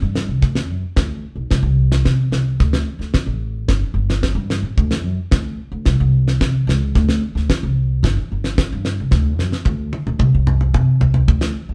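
A straight, steady four-beat groove drives this carefree, joyful highlife cut, taken from a longer piece and played by the band live in one room. The upright bass opens at 0.0 s, its pizzicato steel strings sounding woody and up front as it moves through a low register. A damped 70s drum kit joins almost immediately, its acoustic sound dry and close, with a fat snare, a tight kick and toms. Near the end the drums break into a fill from 9.1 s to 11.3 s before the passage is cut off. A moderate studio reverb gives the pair a sense of shared space while keeping the rhythm section direct.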